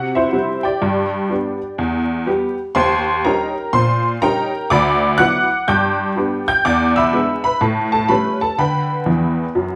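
A detuned, jangly honky-tonk upright piano carries this exuberant, swinging stride jazz passage on its own, sitting up front with a bright, vintage character that ranges from deep D2 bass notes up to sparkling G6. Cut from a longer piece, the roughly ten-second clip moves at 124 BPM in 4/4 with a 65% eighth-note swing, grounded in G major. The harmony travels through colourful changes, including a bluesy Eb7 and a D69, before E7 and A7 lead back home to G/D. The piano closes with a fill from 9.1 seconds. A moderate large-studio reverb gives the natural-sounding instrument a sense of space, as if caught live in one room, while a layer of vinyl crackle adds an old-record patina.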